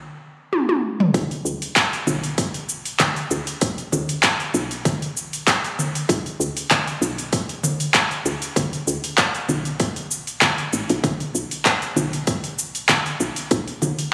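A lightly swung 4/4 groove opens with a short drum fill from the overdriven, up-front deep house kit at 0.5 seconds, its metallic hi-hats, cabasa, congas, handclaps and toms setting a hypnotic, mystical organic downtempo mood. At 1.1 seconds a tight, tape-warm electronic kick drum and a woody, round FM bass with a fast attack and sidechain pumping join in. This cut from a longer piece sounds as if captured on a phone in the room, with compression and a moderate echo-chamber reverb.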